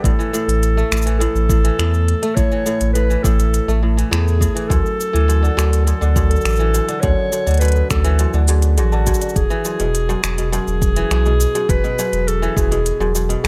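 The mix is dry, with a round, sine-like sub bass sitting up front beneath a pastoral folktronica groove at 103 BPM in 4/4 with a straight feel, in A major. A soft-attacked clarinet carries the melody from a distant, roomy position, its classical-style tone roughened by vintage 12-bit sampler grit and trailed by delay. Beneath it, a kora plays crisp, ringing fingerpicked arpeggios in a low register, also touched with delay, while a very quiet celesta adds a delicate, bell-like second line. A deep electronic kick, tape-warm and re-recorded in a large room, drops out at 12.7 seconds, and an organic electronic kit of cabasa, finger snaps and smooth hi-hats enters at 0.1 seconds. The harmony moves from A5 to Dadd9 and Eadd9 in this short passage taken from a longer piece.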